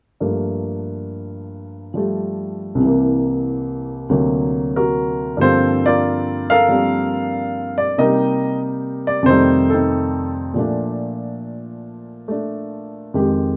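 Jazz at 93 BPM with a cool, smoky mood, this swung 4/4 excerpt from a longer piece features a solo upright piano that sounds woody and up front, ranging from C2 to F5. The harmony moves from G dorian through Gm9, C7 and D7b13, then settles into G minor at 5.4 s, passing through Gm11, Cm7 and F13 before landing on Bbmaj7. The performance was captured live in one room, with a wet studio reverb of about 0.6 seconds surrounding the piano.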